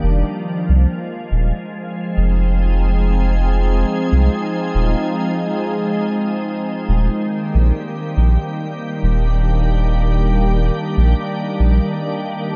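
A dark, lightly reverberant mix frames this spacious, deep ambient dub fragment, where a calm, pure organ-like pad with slow attack, ensemble chorus and its own reverb sustains chords moving from Fm7 to Ebmaj7 at 6.9 seconds, over a round, up-front dub sub bass that holds low until 11.8 seconds, leaving the pad alone to the end.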